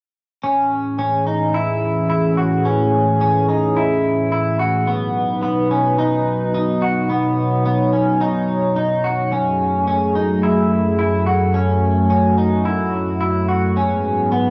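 Soaked in a wet spring reverb and carrying the soft haze of a home cassette recording, this ethereal dream pop fragment drifts along at 108 BPM with a straight feel in 4/4. A smooth, mellow analog pad with a sawtooth edge, a sub octave and a slow attack holds sustained chords through chorus, while a clean, twangy, compressed electric guitar picks arpeggios through lush chorus and tape echo, both parts sitting up front from 0.4 to 14.5 seconds. The harmony glides from Amaj7 to B, then F#madd9 and G#m7, giving the passage a dreamy, floating glow.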